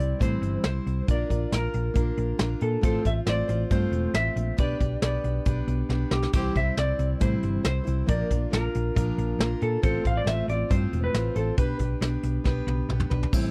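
This short excerpt of folk rock with a heartland rock lean opens with the whole band at once: a soft brush drum kit, a hollow-body electric bass, a plugged-in steel-string acoustic guitar and a clean lap steel guitar, in a straight, steady 4/4 with a jangly, hopeful mood. The lap steel carries the melody in a dusky, fingered slide voice. The acoustic guitar supplies a boxy, parlour-style picked accompaniment beneath it. The picked short-scale bass sits up front with a round, amped, punchy tone, beside the up-front brushed kit, whose medium-tuned snare, solid kick, hi-hat, toms and crash sound natural in the studio room. The harmony cycles twice through C, Bb, F/A and G/B, with drum fills marking the turnarounds at 5.9 seconds and 12.5 seconds. The recording is dry and close, with little reverb, in the manner of a 1970s studio.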